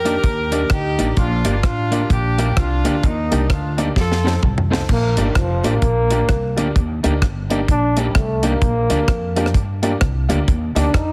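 A swung 4/4 ska groove rides on a dry, up-front reggae drum kit with dark cymbals, a high-tuned snare and a tight kick, alongside a woody, growly pizzicato upright bass. Over a twangy, slightly broken-up electric guitar with spring reverb and slapback echo, and warm upright piano stabs in the background, a horn section with light vibrato carries the cheerful melody until about 4.4 seconds, while a drum fill runs from 4.0 seconds. From 4.9 seconds a vintage trombone takes an upbeat solo through to the end, and the recording has a heavily compressed radio sound.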